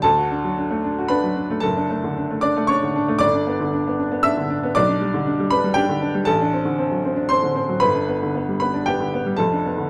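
A clear, up-front baby grand piano plays alone in this brilliant, heroic classical virtuoso study in 3/4 with a rubato feel, its natural, short-sustained tone sitting in a dark production with moderate studio reverb as the harmony moves from D through G to a rootless G7 over the roughly ten-second cut from a longer piece.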